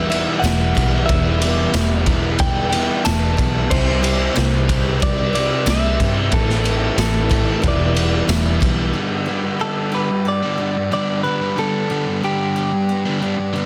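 A dense, heavily limited mix with light small-room reverb frames this hazy, dreamy shoegaze and dream pop rock excerpt at 92 BPM, moving from Em7 through C and Am7 before settling on G. A bright, clean, direct-recorded electric guitar carries the melody through digital delay over very quiet, shimmering twelve-string acoustic arpeggios and a background bank of riffing guitars: a thick fuzz part with analog chorus, a compressed overdriven part with reverse reverb, and a double-tracked crunchy part. A round, foam-muted vintage bass, an up-front, gritty garage drum kit with a boomy kick and dark cymbals, and a jingly tambourine drive the opening, with the drums stopping at 8.8 seconds and the bass and crunchy guitar at 8.9 seconds as the chord turns to G.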